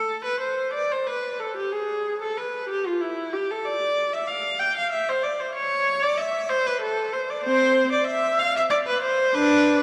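Flowing and solemn, this brief passage from a baroque-style classical suite movement in a rubato 6/8 features a single bowed viola playing alone for its full 9.8 seconds, its rich, soft-attacked tone coloured by vibrato and expressive portamento and set in a wet church reverb with a long decay.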